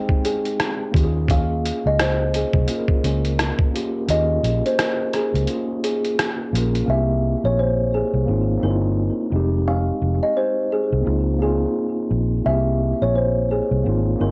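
A swung 86 BPM lo-fi hip hop groove in 4/4 comes from a compressed, pitched-down sampler-style drum kit of hi-hat, thumpy kick and rim click, muffled and re-recorded in a large room, with the kick dropping out at 4.1 seconds and the kit stopping at 6.9 seconds. A dark, round, foam-muted electric bass joins at 0.9 seconds, punchy and saturated, under a mellow tine electric piano playing clean, filtered chords through its built-in speakers, moving from Fm7 through C7, Ab6 and Dbmaj13. Up front, a woody, hollow-toned kalimba carries the ringing, airy melody through cassette tape coloring and light reverb, giving this nostalgic cut from a longer piece a hazy, homemade feel.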